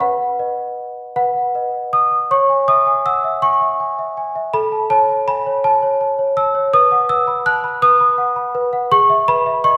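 A classical lullaby in 6/8 at a gentle 54 beats per minute in dotted quarters, this innocent, tender piece is carried entirely by a solo worn celesta, tuned to A4 = 436 Hz and slightly out of tune. Its bell-like, dark tone from medium felt hammers sits up front, ranging from G#4 to F#6 and moving through B, C#m, A, B and E/G#, with a new section arriving at 2.3 seconds. A wet recital hall reverb surrounds the sound in this short cut from a longer piece.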